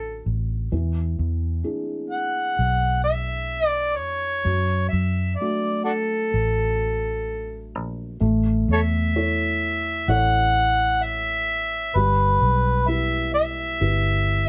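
Closely miked and detailed with light reverb, this tender, heartfelt acoustic folk-pop ballad, cut from a longer piece, sets a mellow, jazz-style harmonica melody full of soft attacks, scooped notes and tongue slaps over an intimate felt-muted upright piano with audible action noise and a round, dark, foam-muted vintage electric bass, its chords opening on Dmaj7 and reaching A at 8.2 seconds.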